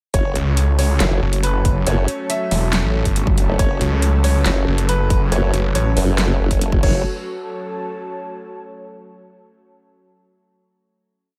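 Awash in digital ambience, this short, chaotic and aggressive piece of heavy wobble dubstep in F# minor hits a half-time drop at 139 BPM from 0.1 seconds, where an overdriven punchy electronic kick and a big-room dance kit with a huge snare, handclaps, metallic hats and crash drive beneath two up-front basses: a detuned formant-sweep wobble bass with chorus, shifting its wobble speed, and a snarling, distorted saw bass chopping out growling phrases. Over them a brilliant concert grand piano repeats a riff melody through dub echo, while an evolving wavetable pad morphs in the background with sidechain pumping. An airy, breathy pad with slowly shifting chords lingers past the drop into the final chord, fading out at 8.7 seconds.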